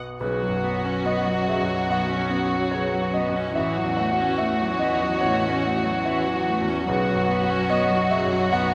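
Fragile and longing, this neoclassical excerpt for piano and strings drifts in a rubato 4/4, cut from a longer piece and moving from Bsus2 through F#m7/A and back. A clear grand piano with long sustain sits up front as accompaniment from the opening moment, joined at 0.2 seconds by a rich, focused violin section holding a smooth, vibrato melody on F#4, while a single cello traces an even second line and a lone viola adds close accompaniment in the background. Beneath them a very quiet, dark string section sustains distant, expressive chords, all set in a moderate scoring-stage reverb.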